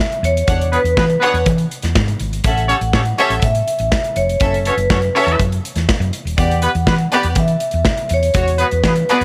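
A ringing, metallic vibraphone with medium hard mallets opens this driving, danceable disco cut at 122 BPM, carrying the melody with a fast motor vibrato in a boxy small room. An acoustic drum kit with a punchy kick and a medium-tuned snare joins almost at once, alongside a dark, round hollow-body electric bass played with the fingers. Lush bowed strings enter at 0.5 seconds with a smooth second line, and a clear vintage horn section adds octave-doubled stabs from 0.7 seconds, over chords moving from E69 through A7 and F#m to Emadd9 and back to E69.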